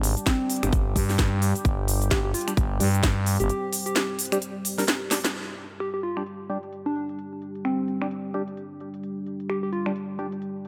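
Lightly reverberant and up front, this gritty, aggressive bass house excerpt moves with a swung groove, built on a growling, overdriven FM bass and a tight, tape-warmed electronic kick that drop out around 3.1 to 3.5 seconds, while a house kit of cracking snare, crisp filtered hats, cabasa, finger snaps and crash cymbal carries on. Beneath it, a deep, moody ambient pad of detuned, ring-modulated sawtooth chords sustains with chorus and pumping, as a hollow, dark organ stab punctuates through tape grit and delay. A round, warbling, keys-like synth lead plays the melody over the top, and a drum fill and band accent near 5.2 seconds mark the move into the second section.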